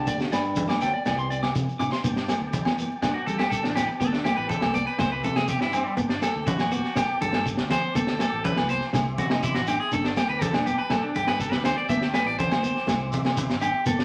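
Joyful and danceable, this highlife guitar band groove moves at 122 BPM in G major, opening with a clean, picked electric guitar melody and a clear, scooped trombone line that both stop at 1.5 s, just as a drum fill leads into the main section. A bright, twangy electric guitar at the edge of break-up sits up front with arpeggios over round fingered bass, a full-bodied fingerpicked nylon-string guitar, gritty, punchy breakbeat drums with a high-tuned snare, damped low congas, a grainy shekere and ringing agogo bells. From 2.0 s a soft, flute-like tonewheel organ adds sustained chords through a slow rotary speaker with chorus vibrato, all under wet studio reverb and vinyl crackle, as Dsus4, Cadd9 and Gsus2 chords cycle through this cut from a longer piece.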